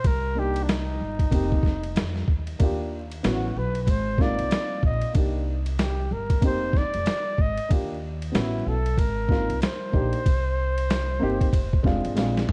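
Jazz-hop with a mellow, cool mood, riding a swung sixteenth-note groove in this short cut from a longer piece. A breathy flugelhorn carries the melody from the start, its soft attack, vibrato and whispered, intimate tone trailed by tape echo. Underneath, a woody pizzicato upright bass and a dark baby grand piano, entering at 0.3 seconds with audible action noise and short, smooth sustain, cycle through a looping progression of Cm7, F7sus4, Ebmaj9, A69 and Ab69, closing on F5. The sampler-style boom bap kit sits up front, compressed, pitched down and gritty, with a thumpy kick, a medium-tuned snare, hi-hat, ride and toms that carry the sound of a large room, and a drum fill at 12.2 seconds. Light reverb and vinyl crackle give the whole production a dark, warm haze.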